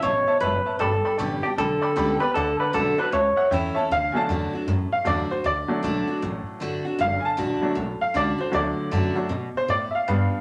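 Swung eighths at 155 BPM drive this rollicking, upbeat rock passage in D major, where a slightly broken-up, lo-fi electric guitar through a small old amp carries the melody up front until 3.5 s, a brilliant, short-sustain upright piano takes a solo from 3.9 s, and a full-bodied picked dreadnought acoustic guitar and a woody pizzicato upright bass fill out the accompaniment in a wet club reverb.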